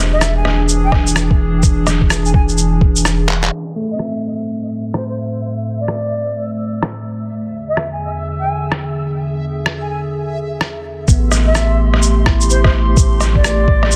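A dense, heavily limited, low-pass-filtered mix with light digital ambience frames this nocturnal, wistful future garage excerpt, built on a warbling, nostalgic lo-fi pad whose sustained chords pump with sidechain and carry a filter sweep from 3.5 to 11.1 seconds. An airy, distant jazz flute sings an expressive, vibrato-tinged melody through tape echo over muffled, pitched-down rim clicks, shaker and handclaps on a swung sixteenth feel, while a thumpy kick and a deep, round dub sub bass anchor the opening and return at 11.1 seconds. After a drum fill and band accent, a bell-like tine electric piano enters with dub echo, and a reversed, granular texture adds a dreamy glow through the middle stretch.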